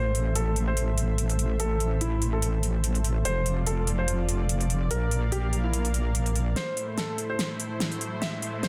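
This short cut from a longer track has a dense, heavily limited modern sound with light reverb: aggressive, weighty wobble dubstep in a swung, half-time groove. A saturated, detuned wobble bass sits up front with chorus and overdrive, grinding low beneath the harmony until it drops out at 6.5 seconds. A lush, thick unison pad sustains chords with chorus and vintage 12-bit sampler grit, and a filter sweep runs through it during the opening stretch. A concert grand piano with deep bass carries the melody through a low-pass filter and dub echo, its notes short in sustain. The big-room electronic drum kit is layered and tape-warm, hitting with a huge snare and crisp hats in studio reverb. The chords move from Am through F6 and Bb, returning to Am at 6.6 seconds, where a build-up takes over with a drum fill, and a very quiet riser enters at 7.4 seconds.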